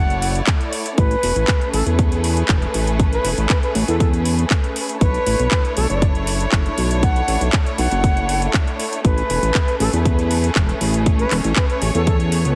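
Cosmic and sensual, this nu-disco excerpt moves at 119 BPM in a straight 4/4, cut from a longer piece and cycling between Bm11 and Amaj9 chords. A breathy, reedy concert flute carries the melody with vibrato and a crisp attack, close-miked and roughened by vintage 12-bit sampler grit and a digital delay. Beneath it, a lush symphonic violin section holds sustained chords with smooth bowed vibrato, pumping under sidechain compression, while a fat, detuned sawtooth analog bass sits saturated and up front. The house drum kit adds handclaps and metallic hi-hats, and a punchy, tape-warm electronic kick drives from 0.5 seconds, both kit and kick carrying the color of a small room. The whole mix has light reverb, digital ambience and a heavily compressed, radio-like sheen, with an electronic swell arriving in the background at 12.2 seconds.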